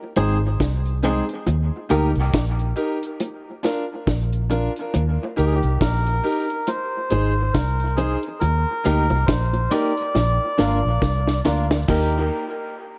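This laid-back, spacious dub reggae excerpt opens on a break at 69 BPM in Eb major, with a muted, round vintage bass up front, a dry, high-tuned reggae kit with a tight kick, clear piano stabs and twangy clean guitar accompaniment both drenched in dub echo, and low-tuned bongos in the background. A reedy, breathy melodica carries the melody from 5.4 seconds, while the guitar, silent since 2.1 seconds, returns at 8.9 seconds. A drum fill at 10.1 seconds leads back to Eb as the echo-heavy mix, set in a small room, carries the lilting swing through the chord cycle.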